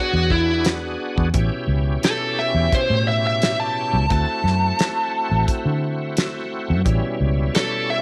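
A studio sound with light reverb frames this swaggering, soulful straight-eighth soul blues, cut from a longer piece. A biting, overdriven lead guitar carries the melody up front with a slapback echo, while a bright, shouting tonewheel organ plays the chords through chorus vibrato and a slow rotary speaker, moving from E7 to A7, D7 and back to A7. Underneath, a round, foam-muted fingered electric bass and a damped 70s drum kit with a fat snare and tight kick sit forward in the mix.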